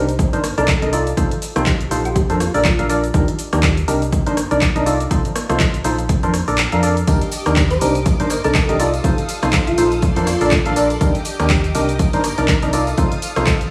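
Joyful, feel-good piano house at 122 BPM in F mixolydian with a swung 16th-note groove, cycling through Cm9, F7/C, Bbmaj9 and Ebmaj7 in this clip from a longer piece. An up-front, hollow organ stab riff with subtle chorus, sidechain pumping and digital delay plays over a round, dark FM bass that also pumps, while an overdriven electronic kick and a punchy analog drum machine of cabasa, handclaps, hi-hat and rim click, both re-recorded in a large room, drive the beat. A gentle, tine-like thumb-piano-like synth pluck with ensemble chorus and delay drifts in the background, the kick drops out at 6.6 seconds, and at 7.1 seconds shimmering vintage string-machine violins and a faint tambourine join, all set in a light studio reverb.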